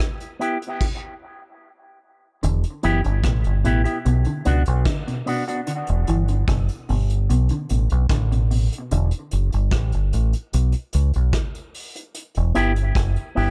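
Deep and heavy, this dub reggae excerpt opens on a break in which a bright, twangy envelope-filtered electric guitar makes a filter sweep over soft brushed drums, with a brief stop at 0.8 seconds. At 2.4 seconds a round, fingered bass arrives up front alongside a mellow, clean guitar playing low arpeggios with subtle chorus and dub echo, while the picked, filtered guitar, also steeped in dub echo, returns near the close. The distant, roomy kit of dark cymbals, punchy kick, hi-hat and rim clicks sits in an echo-heavy mix that moves between E minor, B minor and Bsus2 chords.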